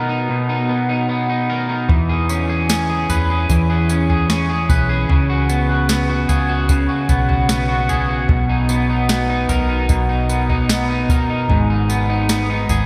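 A twangy, slightly broken-up electric guitar opens alone, picking up-front arpeggios coated in lush chorus and tape echo over a Bmaj7 chord. At 1.9 seconds a dark, round hollow-body bass and a soft vintage rhythm box enter, the drum machine giving a deep kick, crisp snare, tambourine and toms, as the harmony moves through E6, C#7sus4 and back to Bmaj7 before settling on G#m. It's a melancholic, haunting dream pop passage at a straight 75 BPM in 4/4, cut from a longer piece, its mix soaked in a lush hall reverb that hangs for 2.9 seconds.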